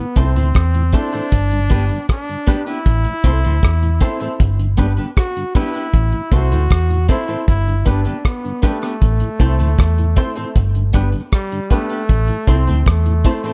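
The recording is dark and warm, with little reverb, and the drums and bass sit up front. This laid-back, meditative roots reggae passage, cut from a longer piece, rests on a steady back-and-forth between Am and G in a straight 4/4 feel. A brilliant trombone carries the melody with light vibrato and a smooth top, its line trailed by tape echo. The cloth-damped drum kit thuds on kick, hi-hat and rim click, and the foam-muted fingered electric bass sounds round and amped, both entering at 0.2 seconds. A clean, twangy, compressed electric guitar, also run through tape echo, sits alongside woody upright piano stabs with audible action noise, while a mellow tonewheel organ with chorus vibrato and a slow rotary speaker hums in the background.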